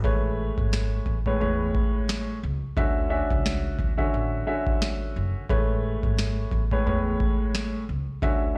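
A booming, overdriven analog drum machine with a deep kick, crisp snare and 12-bit sampler grit sits up front in this nostalgic, warm boom-bap hip-hop excerpt at 88 BPM in A major with swung 16ths, alongside an intimate, tape-coloured upright piano with audible action noise and long sustain moving from Amaj9 to Dmaj9 and back, over a woody pizzicato upright bass on steel strings.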